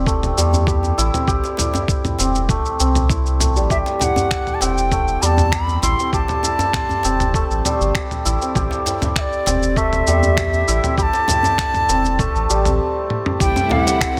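A shimmering santur sits up front, ringing out arpeggios through a low-pass filter and tape echo in this mystical organic downtempo excerpt at 99 BPM in A minor, resting on an Am7 chord. Beneath it, a round sine sub bass holds deep, sustained notes with sidechain pumping, while a gritty, compressed sampler-style kit of finger snaps, shaker and toms joins a thumpy electronic kick, with a deep djembe tucked into the background. At 3.7 seconds an airy, reedy bansuri enters with a close-miked, crisp-attacked melody in a high register, trailed by digital delay. The groove halts in a stop from 12.8 seconds, broken by a drum fill, and then a lush, vibrato-laden string section and a felt-muted upright piano, both pumping with the sidechain, arrive in the final moments before the cut. Light reverb and a small room ambience surround the whole mix.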